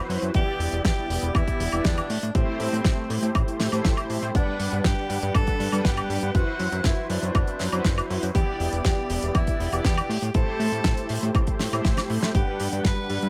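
Nu-disco in G major at 120 BPM, this sunny, groovy clip from a longer piece puts a breathy, whispered tenor saxophone melody with scooped notes and vibrato over mellow synth brass chords, thickened by chorus and digital delay, cycling through Em7, Am7, Gmaj7 and D13/F#. Underneath, a fat, saturated analog bass joins a punchy, up-front electronic kick and a dry, damped 70s kit of hi-hat, fat snare and woodblock, which plays a drum fill at 11.8 seconds. At 12.3 seconds a lush, very quiet string machine ensemble slips in with slow-attack chords, all set in a small room ambience.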